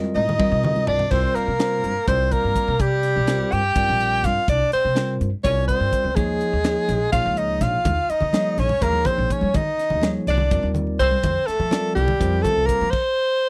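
A crisp drum fill opens this driving, funky stretch of electric jazz fusion, cut from a longer piece and moving at 249 BPM in eighths across a straight 7/8 in C phrygian. Upright bass with a woody, thumpy gut-string pizzicato tone and a bell-like tine electric piano heard through its built-in speakers sit under the kit, whose high-tuned snare and tight kick ring in an airy, polished studio room. At 0.2 seconds a clear soprano saxophone takes the melody up front, close-miked and jazz-styled with vibrato, subtone and scooped notes, while a mellow tenor saxophone carries a second line from a more distant, roomy position. Congas with a thick skin and hard hands sound briefly at the start and return in the background from 7.8 seconds. The harmony moves from Cm9 to C9sus4, then to Eb9sus4 and Fsus4, and the dry, close recording carries a 1970s studio character.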